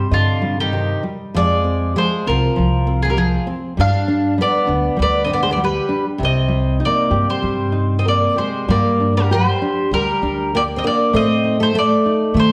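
Rubato in 4/4 at about 98 BPM, this passionate, longing fado-style ballad, cut from a longer piece, sets an up-front, mellow mandolin melody with its picked double strings over a shimmering, octave-doubled fingerpicked twelve-string line with audible finger squeak, a deep classical nylon-string guitar accompaniment and woody pizzicato upright bass, all in a moderate recital-hall reverb as the key moves from C minor to G minor at 8.7 seconds.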